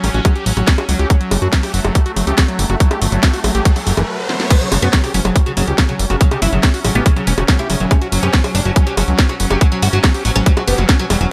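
An overdriven, tight electronic kick drives a straight 4/4 groove under a layered kit of cracking snare, bright hi-hats, bongos and crash cymbal, powering this psychedelic, alien trance excerpt, with a fat, wave-folded analog bass sitting up front beside the kick. In the background, a squelchy, screaming acid riff with distortion, chorus and delay pumps against a bubbling, detuned stepped-filter texture of sustained chords, while an electronic riser climbs from 2.6 s into a short break and drum fill. At the drop at 4.5 s, a woody, plectrum-plucked fretless oud with phaser and delay carries the melody over the dry mix.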